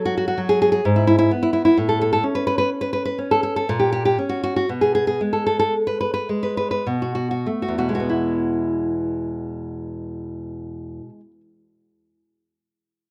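Sunny and warm, this short excerpt from a longer romantic piece for solo classical guitar unfolds in an unhurried, rubato 3/4, with a single fingerpicked nylon-string guitar sitting up front in a small room on a rough home demo mix, ranging from E2 to B4 through chords like E/G#, Aadd9 and A#m6, slowing down from 0.4 to 8.1 seconds before settling onto E as a new section begins.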